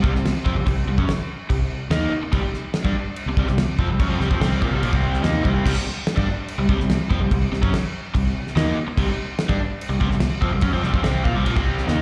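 Heard as a live club gig through the venue's PA, with small-room ambience and club reverb, this gritty, driving classic rock excerpt in C minor at 144 BPM sets a bright, double-tracked, picked overdriven electric guitar riff with spring reverb and slapback echo over a growly, punchy fuzz-fingered electric bass and a dry, damped 70s drum kit with a fat snare and tight kick, all three playing from 0.0 to 12.0 s.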